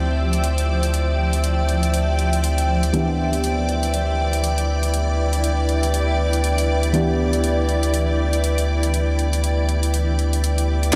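Moody and smooth, this deep house excerpt moves at 120 BPM in 4/4 with a swung 16th-note feel, drifting from Dm11 to Em7/D at 2.9 s inside a dreamy mix soaked in a huge ambient reverb. A rubbery, hollow square bass sits up front beneath felt-muted upright piano stabs with audible action noise, colored by analog chorus, low-pass filtering and analog delay, while a dark, detuned analog pad holds sustained chords. A cloudy, evolving granular pad and a shimmering vintage string machine of violins add texture, and a dry, overdriven electronic hi-hat runs from 0.3 s to 10.9 s.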